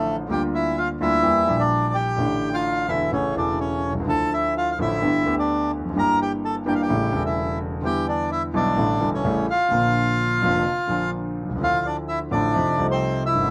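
A small room lends a moderate reverb to this passage of tense, dramatic tango, taken from a longer piece and played with a rubato feel. A reedy, dark, smooth bandoneon carries the melody up front, while a warm concert grand piano, also up front, supports it with deep bass and a natural, intimate tone, its action noise audible. The harmony moves restlessly through diminished and suspended chords, such as Edim and A7sus4, before settling briefly on Bb and closing on F7 at 12.6 seconds.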